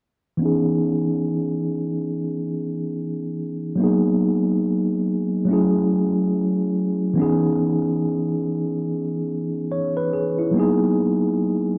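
A mellow, clean tine electric piano opens at 0.4 seconds, sitting up front with a built-in-speaker tone and a low-pass filter sweep running through it as it moves through minor ninth chords until 11.8 seconds. This melancholic, hazy hip hop fragment from a longer piece rides a slow, swung sixteenth-note feel. The production is dark and warm, with a moderate echo-chamber reverb that adds to the haze.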